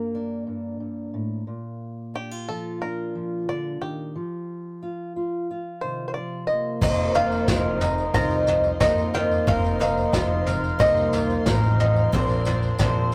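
A rough, tube-saturated rehearsal-room recording in a wet booth, this stirring, wistful indie folk fragment opens with a twangy, up-front banjo melody over a full-bodied fingerpicked dreadnought guitar; a mellow, close-miked French horn with vibrato joins at 5.8 s; and at 6.8 s the arrangement builds as a clear upright piano, a shimmering, octave-doubled twelve-string guitar, round mandolin arpeggios, woody pizzicato upright bass, a brushed drum kit with dark cymbals and a punchy kick, a jingly background tambourine and a distant, very quiet bowed chamber string section all enter.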